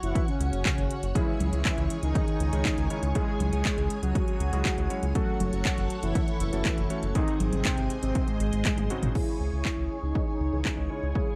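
Italo disco cut from a longer piece, bittersweet and nostalgic, where a dark, detuned synth brass melody with chorus and delay rides over lush string-machine chords, a deep, round analog bass sitting up front, a punchy overdriven kick and a house kit of congas, handclaps, toms, crash and metallic hats, while a clangy electric grand piano enters at 1.2 s with filtered stabs in the background and takes a filter sweep after a drum fill at 8.7 s, all in a dry room.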